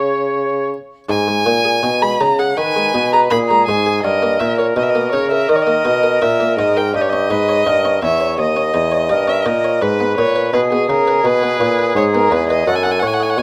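An up-front, expressive violin with vibrato, portamento and a smooth top carries the second line over a grave, introspective baroque-style sonata movement in G# minor, moving at 83 BPM in 4/4. A clear, roomy oboe sings the melody from a distance with light vibrato, while a warm, up-front bassoon holds the bass and a muted, lute-like buff-stop harpsichord plucks a dry continuo beneath. Close, detailed microphones and light reverb frame this 13.4-second fragment of a longer piece, its harmony passing from G#m through D#7 and back to G#m.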